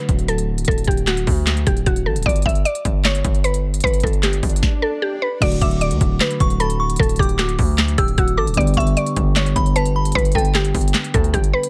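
A woody, round mallet-like synth pluck carries the melody from the opening over soft, dark electric-piano-like synth keys with chorus and a filter sweep, setting a triumphant yet dreamy half-time trap groove in D major at 152 BPM, cut from a longer piece. A heavy, saturated 808-style bass and an up-front, overdriven trap kit with a knocking kick, sharp snare, crisp hats, handclaps and crash drive it, while an electronic swell at 4.2 seconds leads into the second half, where a delicate, tinkling synth tine bell with chorus and delay enters at 5.6 seconds. The sound is dry and close, moving between D and G chords.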